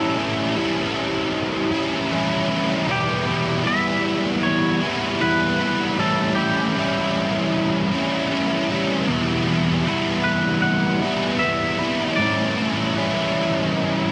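A double-tracked, overdriven electric guitar sits up front with a low riff coated in analog chorus, while a bright, clean twangy guitar plays the melody in the background with subtle chorus and slapback echo. This hazy, dreamy rock passage moves at a relaxed 77 BPM in A mixolydian, cycling between A5 and Em before landing on A7sus4 at 12.2 seconds. Light reverb and digital ambience lend a soft glow to this short section cut from a longer piece.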